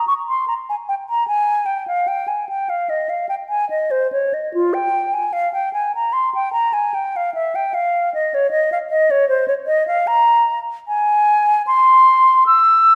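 A mellow, hollow silver concert flute sounds first and carries this short fragment alone from 0.0 to 12.9 seconds, cut from a longer classical piece. It is a baroque-style fantasia in A-flat major, with a solemn, grave mood and a free, rubato feel around 76 BPM in 4/4. The flute's tone is pure and metallic, touched with vibrato and clearly tongued notes, and it ranges from F4 up to E6. It sits up front in the sound, surrounded by the wet reverb of a scoring stage with a decay of about 1.6 seconds. The tuning rests slightly above standard pitch, at A4 = 441 Hz.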